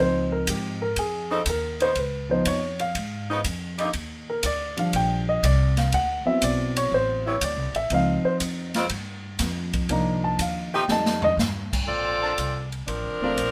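A swung 4/4 groove drives this joyful, brassy big band swing excerpt, with a polished, airy drum kit joining at 0.5 seconds, its punchy kick and medium-tuned snare riding under crash, hi-hat, ride and toms. A pizzicato upright bass with a woody tone and steel strings anchors the low end, while an intimate baby grand piano, up front and natural with audible action noise, carries a featured solo through the opening stretch over rich jazz chords. Behind it, a saxophone section with vibrato adds sustained ensemble chords in two passages, and a short drum fill sets up the shift in the music at 11.9 seconds. There a clear saxophone section with light vibrato takes over the melody, tight and forward, and a trumpet section with a soft attack and smooth top adds brief stabs from 12.2 seconds. The whole excerpt sits in a modest booth ambience that keeps the sound close and focused.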